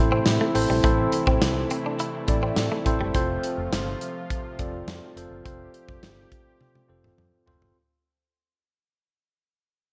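A tine electric piano with medium tremolo through a combo amp, a smooth detuned sawtooth pad with chorus and tremolo, and a dark, foam-muted, round fingered bass open this nostalgic, urgent 1980s-style pop piece at 104 BPM over Am then F. They are joined by a picked, compressed clean guitar riff with subtle chorus and delay until 3.1 seconds and a punchy, up-front drum kit with gated reverb, all in a lush hall with bright digital sheen, fading out throughout, with a drum fill arriving at 6.6 seconds.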